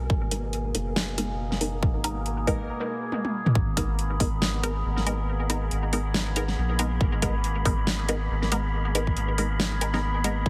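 A nasal, overtone-sweeping drone with vintage 12-bit sampler grit and a round, soft sub bass open this brooding, heavy slice of half-time deep dubstep, as filter sweeps move through the drone and a muted, detuned chord stab with phaser and dub echo over a punchy kick and a kit of metallic hats and huge snare, until a drum fill leads into the drop at 3.6 seconds and a breathy, wind-like noise texture drifts in the background from 3.9 seconds, the whole mix carrying a heavily compressed radio sound.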